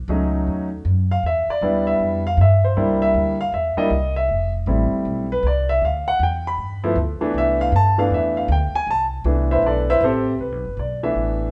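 Recorded live in one large studio room with moderate reverb and a soft, rounded top end, this relaxed, playful jazz piano trio excerpt swings at 157 BPM in 4/4 and C major. A warm, natural concert grand with a deep low register carries the melody and takes a solo until 10.4 seconds, while a woody pizzicato upright bass with steel strings sits up front underneath. The harmony moves through a rootless B7, Em7, C7, Fmaj9, Dsus2 and G69, settling on Cmaj13 at 7.3 seconds before a new section begins at 10.4 seconds on a rootless Cmaj13.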